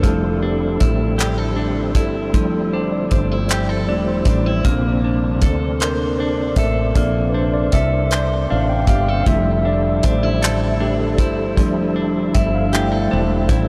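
From its first moment at 0.0 seconds, this slow six-eight R&B fragment in F major opens with a mellow tine electric piano taking the solo, sounding through its built-in speakers over a cloth-damped, thuddy drum kit of kick, hi-hat and handclaps. Moving at 52 beats per minute in a straight feel, the mood is tender and intimate, with the harmony moving from Fmaj13 to Bbmaj9 at 4.7 seconds and back to Fmaj13 at 9.3 seconds. A woody fretless electric bass sits up front with a round, growly punch, while a clean, picked electric guitar adds a compressed second line. A tonewheel organ holds sustained chords with audible key click, chorus vibrato and a fast rotary speaker. The whole mix is soaked in a huge ambient reverb, giving this short cut from a longer piece a dreamy, floating glow.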